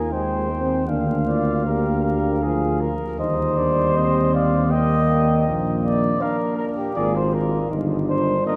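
A classical brass quintet begins all at once in a triumphant mood, with the mellow trumpet carrying the melody in light vibrato over a warm, soft-attacked flugelhorn second line, while the smooth-topped French horn and a distant, roomy euphonium fill the accompaniment and the tuba sits up front on the bass. The phrase moves freely in three with rubato, passing from Fm7/Eb through Bb7/Ab to Eb/G. A wet cathedral reverb from a church or concert hall surrounds the ensemble beneath a layer of vinyl crackle, and the tuba stops at 8.3 seconds, just before the rest of this fragment of a longer piece ends at 8.6.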